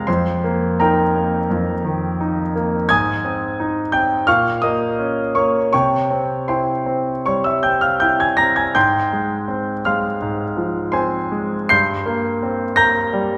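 A lush recital-hall reverb with a 1.6-second decay surrounds an up-front, intimate concert grand, whose action noise is audible and whose deep bass and long sustain ring through the space. This is a bittersweet, passionate romantic character piece for solo piano in F minor, in 4/4 at 75-88 BPM with a rubato feel, tuned to A4 = 438 Hz and spanning F2 to C7. Cut from a longer piece, the 13.4-second passage moves from Eb/F through Ab, Bbm and C before settling on Fm/Ab and a C7 chord over a G bass near 11.7 seconds.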